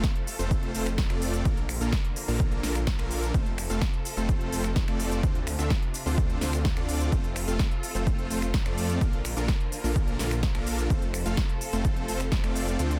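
Triumphant and euphoric, this festival progressive house cut in F major moves at 127 BPM in a straight 4/4, with huge detuned supersaw chords playing a riff with delay and sidechain pumping over a thick, saturated, chorused saw bass, a distant bowed string section holding sustained chords in the background, a layered big-room kit of punchy snare, crisp hats, finger snaps and shaker, and an up-front electronic kick that drops out near the end, all cycling through F, Bbmaj7 and Dm7 in a dense, heavily limited modern master.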